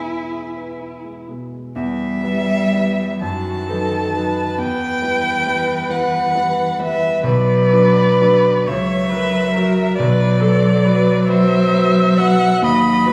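Heard through a moderate concert hall reverb, this fragment of a slow, lyrical romantic movement for piano quartet in E minor unfolds in a rubato 6/8 at 40-47 BPM, with a dark, woody violin singing the melody up front with vibrato and a soft attack, an expressive cello carrying a distant second line with vibrato and portamento, a polished concert grand piano with deep bass accompanying up front, and a warm viola filling in the accompaniment with gliding portamento, as the harmony turns from E major to E minor at 1.8 seconds and reaches B minor at 7.2 seconds before ending on B/D# at 12.6 seconds.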